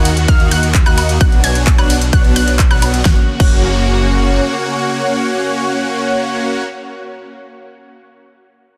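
Huge, up-front supersaw chords carry a triumphant festival progressive house riff with lush chorus and dub echo, joined by a thick, saturated detuned saw bass that stops at 4.4 seconds, plus a punchy overdriven kick and a big-room kit with a massive snare that drop out at 3.5 seconds. Meanwhile, a lush unison pluck arpeggiates high in the background and a clear, bowed studio string section holds sustained chords, the melodic parts all pumping in this uplifting excerpt that moves from D#m and Bmadd9 to F#.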